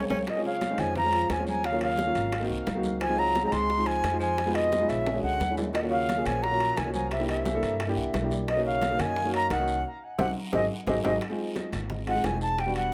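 A band accent and drum fill open this danceable, sunny Afro-Cuban jazz excerpt in straight 4/4, with an airy, reedy concert flute carrying the melody up front, dressed in plate reverb and tape echo and shaded by vibrato and a soft attack. Beneath it, a smooth, vintage-toned grand piano with short sustain comps through rich jazz harmony, and a woody pizzicato upright bass on steel strings anchors the low end. A clear, close-miked tenor saxophone adds a second line in jazz style, with vibrato and scooped notes, sitting in the background until 11.1 seconds. Ringing medium-tuned congas and metal-shell timbales in a live room and round low-tuned bongos played with soft hands stay in the background, joined by a raspy, close and dry guiro. After a piano fill and a band accent, the flute takes a brief solo over the closing section from 11.2 seconds, all within the wet reverb of a club-like room.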